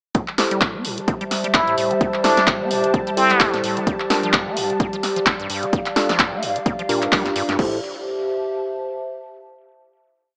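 A punchy, tape-warm electronic kick drives a four-on-the-floor pulse at 129 BPM in 4/4, with a lightly swung sixteenth feel, while an overdriven analog drum machine adds a punchy snare backbeat, handclaps, closed and open hi-hats and crash cymbal, both kits sitting up front. This is a driving, hypnotic acid house piece in A phrygian, shifting between Am7 and Gm7. A squelchy, hollow square-wave acid bass runs a resonant sixteen-step riff full of accents and slides, coloured by cassette grit and tape echo. A smooth, detuned sawtooth pad holds mellow sustained chords, joined by a warbling, nostalgic lo-fi pad with slowly shifting chords; both breathe with sidechain pumping. A clean tine electric piano drops sparse, echoing chord stabs, and between 1.5 and 3.5 seconds a brilliant plunger-muted trumpet plays short jazzy phrases with wah-wah, vibrato and scooped notes. Everything sits in a spring-reverb ambience with a small-speaker character, and after the drop the lo-fi pad carries the final Am7 chord until 9.4 seconds.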